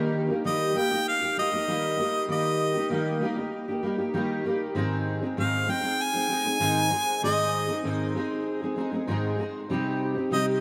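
A lush hall reverb bathes this rough home-demo mix, giving the short cut from a longer pop piece a wet, roomy sheen. It's a sunny, carefree moment in a straight, even pulse. A double-tracked, fingerpicked steel-string dreadnought guitar carries the accompaniment from the first second to the last, its full-bodied tone sitting up front. Half a second in, a close-miked harmonica takes the solo melody, clear-toned with light vibrato and scooped notes, its line trailed by a delay. The harmony settles on its opening chord before shifting at 4.8 seconds and again at 9.7 seconds, and the harmonica falls away at 10.5 seconds, just before the guitar closes at 10.6 seconds.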